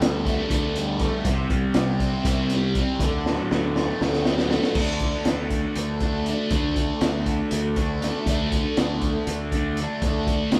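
Driving along in an odd 7/8 metre with eighth notes at 240 BPM and a straight feel, this short excerpt of psychedelic rock cut from a longer piece feels hypnotic and dark. A fuzz guitar carries the riff up front, its bright, picked, double-tracked tone thickened by distortion and a phaser and held tight with compression. Beneath it a growling fingered electric bass, overdriven and amped, stays low in its register. The crunchy breakbeat drum kit has a punchy kick, a high-tuned snare, a hi-hat, and dark crash cymbals, with a gritty, saturated, rolled-off sound that sits close to the listener. The harmony moves from Dsus4 through C5 to D, and a drum fill from 3.3 to 4.8 seconds leads into a new section that settles on D5 and runs to the end at 10.6 seconds. The band sounds as though it is playing live in one room, wrapped in a moderate large-studio reverb.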